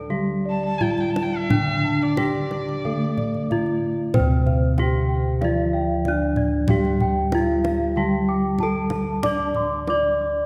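The pulse moves in a four-beat metre with uneven beats in this serene, shimmering Javanese gamelan passage, cut from a longer piece. Up front, a bronze metallophone struck with a horn mallet carries the melody in a bright, airy voice, while a second metallophone, played with padded disc mallets, supplies a mellow accompaniment whose paired tuning sets up shimmering beats. Bossed gongs with padded beaters hold the bass in round, softly beating tones, and a higher set of bossed gongs spins band-limited, vintage-sounding arpeggios through tape echo. A single bowed erhu adds a rich, earthy second line between 0.5 and 3.9 seconds, biting yet smooth at the top, with light vibrato and portamento. The deep kendang sits close and dry, and from 4.1 seconds a third metallophone, struck with a wooden mallet and placed mid-forward, joins with its own echoed arpeggios, all heard from further back in a reverberant concert hall.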